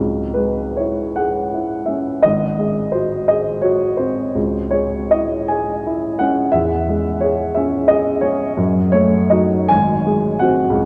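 A dark, mellow baby grand piano sits up front, playing alone through this short romantic character piece in C# minor. In a slow, rubato 6/8 of roughly 49-60 BPM in dotted quarters, it moves between C#m and G#7, passing through C#m/E and D#dim/F#, spanning G#1 to G#5 with a bittersweet, passionate mood. A wet cathedral reverb with a long 5.8 s tail surrounds the instrument, giving the sound of a church or concert hall in this 10.9-second fragment cut from a longer work.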